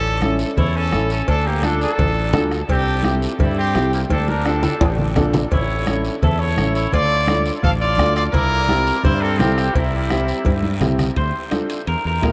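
Passionate and fiery, this fast cumbia in D minor at 170 BPM sets a punchy, distant trumpet melody over a round, dark bass, a woody upright piano, and a bright, twangy guitar that takes a brief solo at 11.2 seconds, while a soft-beater bombo, thick-skinned congas, raspy guiro, and ringing cowbell and timbales drive the groove in a vast, echoing space.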